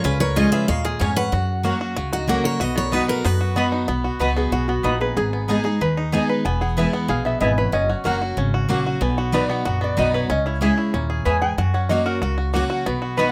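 A lively, driving bluegrass excerpt at 187 BPM in a straight 4/4, opening in B lydian before settling into B major at 3.9 seconds. A bright, full-bodied picked acoustic guitar carries the melody only through the opening 3.8 seconds, with finger squeak audible, while a second up-front acoustic guitar supplies full-bodied accompaniment across the low and middle range. The lap resonator guitar, mellow yet metallic and nasal, plays a second line with fingerpicks and slide, then takes a steel-bar solo from 3.9 seconds to the end. Around it, a twangy, percussive banjo plays arpeggios, a woody pizzicato upright bass holds the bottom, and a bright mandolin with doubled strings adds stabs from 0.4 seconds. The chords move from C# and F# to B, then through G#m, E, F#, B, C#m and F#, captured with close, detailed microphones and light reverb.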